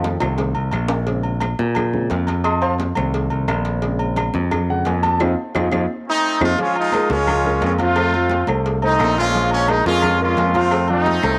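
Driving and fiery, this salsa excerpt in Bb minor moves at a brisk 174 BPM, opening with a dark, mellow grand piano solo, its action noise audible, over a bright, up-front picked electric bass and a background bed of ringing congas, tight cowbell, metal-shelled timbales with agogo bells and woody claves, as the harmony swings between F7 and Bbm7. Drum fills mark the opening and the stretch from 5.2 to 6.6 seconds, where the band hits an accent together. A tight, close-miked trumpet section with light vibrato enters at 6.1 seconds to take the melody up front, shortly before the next section begins.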